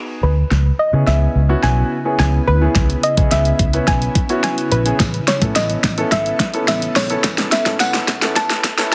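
Dance-pop with a bittersweet, energetic mood, this excerpt opens on a natural-sounding baby grand piano pumping under sidechain, soon joined by a soft, round pluck melody with chorus and delay, a dark, foam-muted electric bass that pumps as well, and a very quiet ethereal pad shimmering with phaser. A produced pop drum kit sits up front with a knocking kick, fat overdriven snare and warm hats, driving a build-up with a drum fill and a filter sweep, while a jingly, very quiet tambourine arrives at 5.0 s as the harmony moves from C#m7 to Aadd9. The mix carries light digital ambience and a dense, heavily limited modern master.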